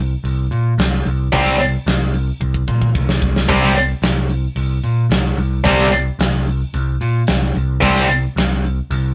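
A driving, heavy hard rock groove at 111 BPM in straight 4/4, cut from a longer piece, opens with a growly, overdriven picked bass alone before a gated 80s drum kit with a punchy kick, medium-tuned snare, hi-hat and bright splash cymbal comes in and throws a fill at 2.4 seconds. A high-gain guitar riff sits up front from 1.3 seconds, joined at 3.5 seconds by a cranked stack guitar further back, overdriven with tremolo, all resting on a C5 power chord. The sound is a rough rehearsal-room recording with a moderate studio reverb, warm saturation and a dark top end.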